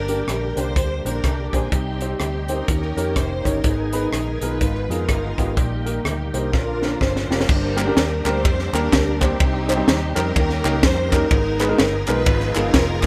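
A soulful, reverent uptempo gospel piece at 125 BPM in swung 4/4 opens on a lush, bowed string section carrying the melody with tape echo, over an intimate grand piano with audible action noise, a round, foam-muted electric bass, and a shouting tonewheel organ, lightly overdriven with fast rotary speaker and chorus vibrato, sitting in the background. A punchy, up-front drum kit with a high-tuned snare and a pumping small-room sound drives the music, and after a drum fill at 6.5 seconds a crisp group handclap joins at 7.8 seconds. Light reverb and a rough home-demo mix frame the recording.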